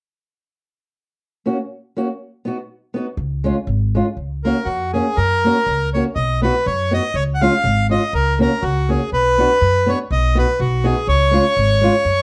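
Festive and bouncy, this short cut from a longer alpine folk dance-band piece moves at 122 BPM in 2/4 with a light swing, in F# major. A dark, boxy fingerpicked old ladder-braced acoustic guitar opens at 1.5 seconds, a woody pizzicato upright bass joins at 3.2 seconds, and a reedy, mid-forward accordion carries the melody from 4.4 seconds, touched with plate reverb. All three sit up front in a small room, with a brief minor chord colouring the second section.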